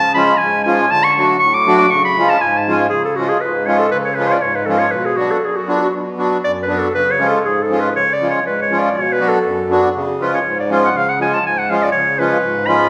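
A wet recital-hall reverb, about 1.4 seconds long and typical of a church or concert hall, surrounds this short cut from a longer Balkan folk piece. The mood is restless and bittersweet, moving at 120 BPM in a straight 2/4 in C# Phrygian dominant, tuned to A4 = 439 Hz. A bright clarinet in classical style carries the melody up front, ranging from E#4 to D6 and taking a solo from 2.9 s to the end at 12.9 s. Beneath it, an up-front accordion provides the accompaniment throughout, its reedy, airy tone colored by a slow beating. The harmony circles around C#, touching D early on and Bm in the later passage before returning to C# each time.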